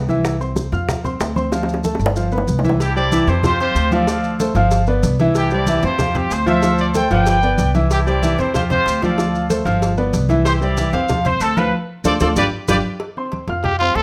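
A straight, brisk 4/4 pulse at 188 BPM drives this joyful, sunny salsa in C major, cut from a longer piece. Congas played with hard hands and tight, high-tuned bongos and cowbell with soft hands sit in the background, while grainy maracas carry a touch of live room. A woody, thumpy pizzicato upright bass anchors the low end under an intimate grand piano, whose natural tone includes audible action noise as it moves through chords built around Cadd9, Fsus2, Dm7 and G7. After a drum fill, a punchy, vintage trumpet section with vibrato takes the melody up front at 2.8 seconds, and a band accent and second fill bring that passage to a close. At 13.6 seconds a raspy, gritty, growling solo trumpet steps forward with light vibrato, all set in light reverb and captured with close, detailed microphones.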